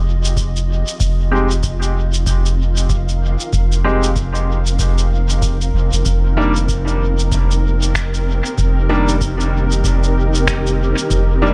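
The recording is fairly dry and close overall, a short, hazy and deep slice of ambient dub in a swung four-four. A granular cloud pad fades in from the start, its detuned sine tones blurred and slowly evolving under its own built-in reverb, holding mellow sustained chords that shift from Fm7 to Cm7/F at 6.1 seconds. Beneath it sits a round, soft sub bass, up front and sustained with a fast attack, while a very quiet, tape-warm electronic kick adds a deep pulse. Muffled, pitched-down cabasa and finger snaps, compressed and sampler-like, sit in a small room ambience with a dub echo. From 1.3 seconds a bright, woody upright piano plays open stabs with long sustain, passed through a low-pass filter with a sweep and a dub echo of its own.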